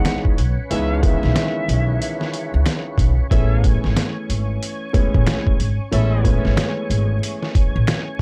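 A gritty, pitched-down sampler-style drum kit with a thumpy kick sits up front beside a woody, pizzicato upright bass in this moody, tough boom-bap hip-hop excerpt with a swung sixteenth feel. A dark, intimate grand piano with audible action noise and cassette-tape character moves from C#m7 to Amaj7 over lightly overdriven tonewheel organ chords turning through a slow rotary speaker, while a very quiet finger snap adds a human touch. An airy, distant jazz flute with vibrato and chiff is heard only until 2.2 seconds, and a background trumpet section plays stabs with analog delay from 0.7 to 6.4 seconds, in a dry, crackling vinyl-tinged recording.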